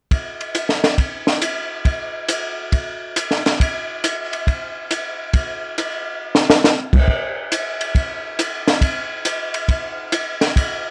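Jazz at 138 BPM in 4/4 with a swung eighth-note feel, this warm, swinging excerpt features a compact cocktail drum kit playing alone from 0.1 to 10.7 seconds, sitting up front with a dry, acoustic sound, dark cymbals, a high-tuned snare and a punchy kick across crash, hi-hat, ride and snare. A drum fill at 6.2 seconds leads into a new section at 7.1 seconds. The whole recording carries light reverb and the worn, warbling pitch drift of old cassette tape.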